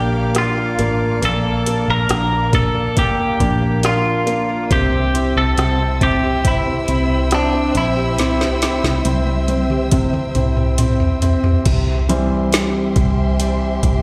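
A bright, twangy twelve-string electric guitar carries the melody up front with slapback echo, over a clear grand piano with audible action noise, a fingerpicked acoustic archtop guitar in the background, expressive bowed strings with vibrato and portamento, and a dark, foam-muted, round bass, all in a tender, hopeful pop ballad at 69 BPM that moves from Bb to C. A smooth R&B drum kit with a woody snare and metallic hats enters at 0.3 seconds and plays a fill from 8.2 to 11.7 seconds. The guitar melody stops at 10.8 seconds, and the piano takes a solo from 11.7 seconds, all heard as a live gig through the venue's PA with recital hall reverb.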